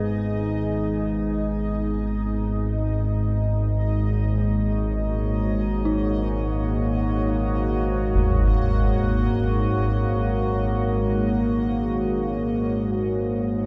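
Desolate and unsettling, this dark ambient drone drifts in free time over a G#m to D#m7/G# harmony. A vintage, warbling analog drone and a deep, moody pad of sustained chords sit up front, while an eerie, inharmonic detuned synth bell traces arpeggios in the background through diffuse delay and shimmer reverb. A bright, resonant bubbling stepped-filter texture fades out, and a concert bass drum sounds at 8.1 s, the whole scene suspended in a huge ambient reverb with a warm production.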